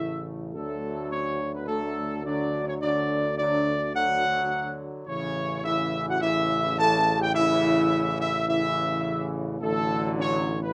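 Classical ceremonial fanfare, majestic and triumphant, in a straight 4/4 where a mellow, up-front trumpet section carries the melody with light vibrato and a soft attack. Beneath it a bright, tight trombone section and a background French horn section hold sustained chords, while a distant, roomy tuba with vibrato anchors the bass, all set in moderate studio reverb across this brief 10.7-second cut from a longer piece.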